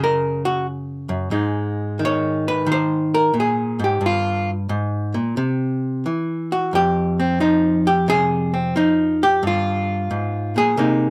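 Swinging eighth notes at 89 BPM in 4/4 carry this smoky solo jazz excerpt in F minor, where a single dark, clean, picked hollow-body archtop guitar, miked and amplified and placed up front, moves through chords such as Gb5, Absus2, Gm7 and C across roughly 11 seconds, captured by close, detailed microphones in a moderate club ambience.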